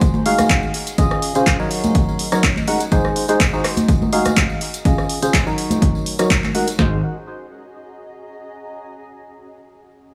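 A hollow, percussive organ stab riff with chorus, cassette-tape grit, delay, sidechain pumping and a filter sweep opens this uplifting, euphoric piano house excerpt over an up-front house kit with a punchy kick and snare, tape-toned analog drum-machine handclaps, hi-hat and rim clicks, ringing tambourine and congas, and a very quiet, blurred granular pad, until the percussion falls away around 6.8 seconds and a bright, growly fingered electric bass enters briefly as the pad lingers to 8.7 seconds.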